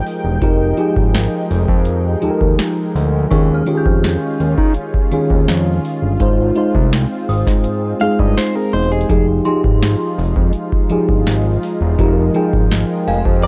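Contemporary R&B at 83 BPM in F minor, moody and late-night, cut from a longer piece: a dark, dreamy FM electric piano with a soft pad layer and chorus sits up front over a mellow, detuned unison pad, moving through Fm9, Eb9sus4 and Ab6 before returning to Fm9. A booming, overdriven analog drum machine with a deep kick, crisp snare and metallic hats drives alongside a fat, nasal, saturated analog bass, while an inharmonic synth chime with ensemble chorus and analog delay rings in the background from 3.3 seconds. A clean, compressed electric guitar recorded direct adds picked arpeggios from 8.0 seconds, the electric piano plays a short fill at 12.7 seconds, and the whole recording has a dry, gritty cassette-tape character.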